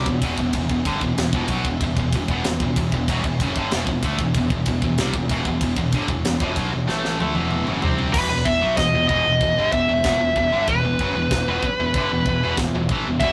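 A distorted high-gain lead guitar enters up front at 8.1 s with a melody over a bright, double-tracked heavy riff guitar, a round, punchy fuzz bass and a tight metal drum kit with bright cymbals that plays a fill from 6.9 s, giving this dark, relentless heavy metal fragment in E minor at 95 BPM a rough rehearsal-room sound with moderate reverb.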